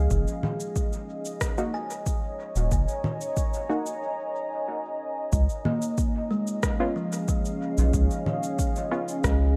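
A dark, detuned sawtooth pad holds sustained chords with chorus while a woody kalimba rings out arpeggios through dub echo and a filter sweep, over a round, nasal analog bass sitting up front, in this peaceful, hazy ambient dub excerpt at 92 BPM in Db major. An overdriven electronic kick and tape-warm electronic cabasa, congas and rim click with dub echo join almost at once, and from 1.6 seconds a muted, mellow chord stab with chorus, cassette tape character and dub echo adds filtered chords. A break arrives at 4.0 seconds before a new section begins at 5.3 seconds, the mix sitting in light reverb.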